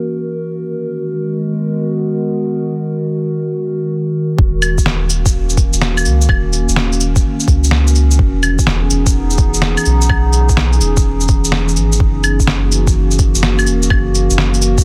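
A warbling, detuned tape-like pad with lo-fi sampler grit, chorus and sidechain pumping opens this rainy, melancholic future garage excerpt at 126 BPM with a 16th-note swing, sustaining dark chords from F#7 through G#m9 under a filter sweep until a soft overdriven kick and deep, round dub sub bass arrive at 4.4 seconds, followed at 4.6 seconds by muffled, pitched-down sampler-style cabasa, claves, shaker and snare, up front and re-recorded in a small room, as the harmony moves through D#m7 and C#m9/E in a dense, heavily limited master.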